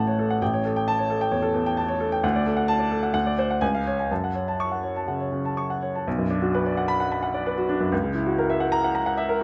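Agitated and stormy, this short passage cut from a longer piece is a classical virtuoso piano study in 4/4, moving with a rubato feel at roughly 120-133 BPM. A clear, open baby grand plays alone throughout, sitting up front with long sustain and ranging from A1 up to C#6. The music begins in F# minor, passing through A7, D, D7 and C# before settling on F#m at 4.1 seconds. At 6.1 seconds the key turns to B minor with a Bm chord, and an F#7/C# arrives at 7.9 seconds as the passage draws toward its 9.4-second cut. Close, detailed microphones capture the instrument within a moderate recital hall reverb, giving the sound both intimacy and a sense of space.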